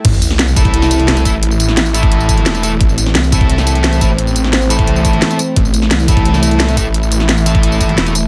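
A straight 4/4 pulse at 174 BPM drives this dark, mechanical stretch of technical drum and bass in A minor, tuned to A4 = 438 Hz, with a knocking electronic kick and a layered kit of cracking snare, bright hats, crash and tambourine sitting up front from the opening drop. A snarling, detuned sawtooth bass growls low with distortion and overdrive, while an evolving, chorused pad holds sustained chords with a soft attack and long release, and a very quiet swell and sub drop marks the impact in the first 1.4 seconds. From 0.6 seconds, picked fuzz guitar stabs cut in, double-tracked and trailed by delay, and the mix stays dry.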